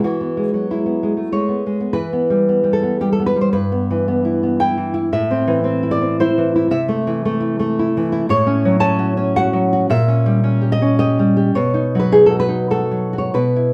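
A wet studio reverb and a listening position further back in the room give this short cut from a longer romantic piece a roomy glow, though the nylon-string guitar itself sits up front. Played solo in a rubato 3/4, the thumb-plucked classical guitar has a warm, nostalgic tone, spanning G2 to A5. It opens on an E chord, then moves into a new section at 2.0 s that passes through Em, Am and A#dim7 before arriving on B at 11.5 s.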